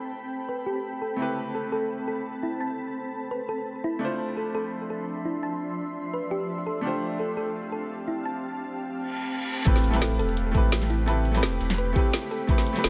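A bright, slightly worn baby grand piano and a shimmering, ethereal pad open this rolling, soulful liquid drum and bass passage in A minor at 170 BPM, the piano trailing dub echo while the pad breathes with sidechain pumping over Am9, Dm9 and G9sus4 chords. From 0.5 seconds a round, tine-like synth pluck with a vintage FM warble spins arpeggios through chorus and delay, a filter sweep shaping its tone across the opening stretch. A reverse cymbal rises at 9.1 seconds and an impact lands as the drop arrives at 9.7 seconds, back on Am9. There a knocking electronic kick sits up front beside a garage kit of woody snare and metallic hats, the kit's hats, snare and small-room ambience all low-pass filtered. A deep, round sine sub bass anchors the drop beneath them, all under a light reverb in a fragment cut from a longer piece.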